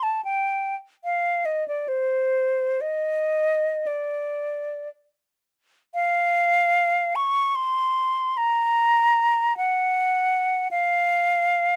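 Freely stretched rubato phrasing unfolds over a 3/4 metre in this short classical fragment, cut from a longer piece for unaccompanied concert flute. The mood is nostalgic and lyrical, with the solo line shaped expressively and given room to breathe. The flute's tone is airy and warm, colored by vibrato, with tongued notes giving each phrase a clear start. Its melody moves between C5 and Db6, staying in the instrument's bright upper register. The piece falls into two sections, with the second beginning at 6.0 seconds and the music running to 11.8 seconds. Close, detailed microphones and a dry room place the flute up front, so every breath-touched nuance comes through intimately.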